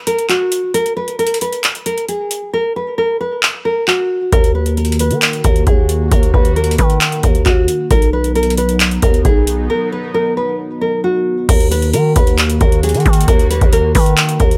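Dry and close, this dark, hard-hitting half-time trap excerpt sets a fingerpicked, full-bodied nylon-string guitar melody with digital delay over a booming, overdriven analog drum machine of deep kick, metallic hi-hats, handclaps and crash cymbal, and at 4.3 seconds a growling, buzzy 808-style bass and a sweeping, detuned sawtooth pad with chorus join in.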